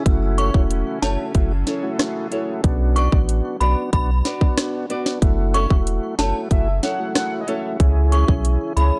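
Dancehall at 93 BPM with a sunny, summery mood, built on an overdriven, up-front electronic drum kit with a tight kick, sharp snare and metallic hats, a round sine sub bass, a smooth tonewheel organ with chorus vibrato, a moody evolving pad in the background, fingerpicked flamenco guitar arpeggios, and a chiming, inharmonic synth melody with tremolo and delay, joined at 6.5 seconds by a velvety synth lead over F#m7, Bm and C#m chords in a dark digital production.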